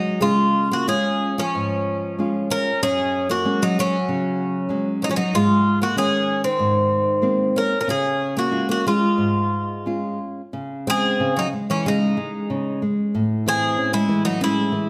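Fado-style ballad, mournful and longing and cut from a longer piece, in which an up-front Greek bouzouki with metallic double strings carries the melody over a bright, shimmering, octave-doubled twelve-string acoustic guitar playing a second line and a warm, fingerpicked classical nylon-string guitar, also up front, giving accompaniment, all three playing throughout in a loose rubato 4/4 that moves into a new section at 10.5 s, steeped in a wet recital hall reverb.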